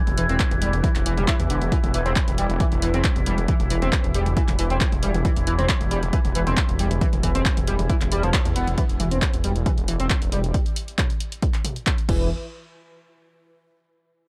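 Driving peak-time techno in E minor at 136 BPM, this intense, hypnotic excerpt from a longer piece opens on a drop where a resonant, wave-folded drone with moving overtones, chorus, phaser and reverb pulses under sidechain pumping until 8.8 seconds, just after a band accent at 8.3 seconds. Beneath it a thick, beating, menacing detuned saw bass pumps against a punchy electronic kick, while a punchy analog drum machine adds crash, handclaps, hi-hat and toms, both re-recorded in a small room. A screaming, guitar-like overdriven synth lead with ring modulation, vibrato, analog chorus and delay carries the riff until 12.3 seconds, all within a dry, gritty hardware recording.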